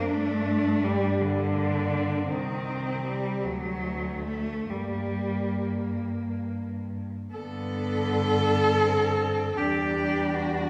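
Elegiac and yearning, this fragment of a lyrical classical piece for cello ensemble moves in a flexible, rubato 6/8. An expressive bowed cello carries the melody with vibrato and portamento, a rich, smooth second cello adds a second line, another cello supplies the accompaniment, and a dark, woody cello holds the bass line. The players sound distant within a reverberant church or concert hall, and a new section opens at 7.3 s.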